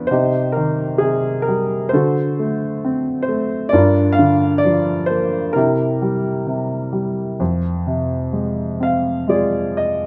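Dark and melancholic, this short classical fragment, cut from a longer piece, features a lyrical solo piano moving in a flexible, rubato 4/4. A warm baby grand carries everything alone from start to finish across its 10.1 seconds, its tone warm and natural, sitting up front and ranging from F2 to F5. The harmony drifts through a sombre minor-leaning progression, opening on C minor and passing through D7, G minor seventh and C7 before settling on F minor near 7.4 seconds. Close, detailed microphones capture the instrument intimately, while a light reverb lends a touch of air around it. The tuning sits slightly below modern concert pitch, at A4 = 435 Hz.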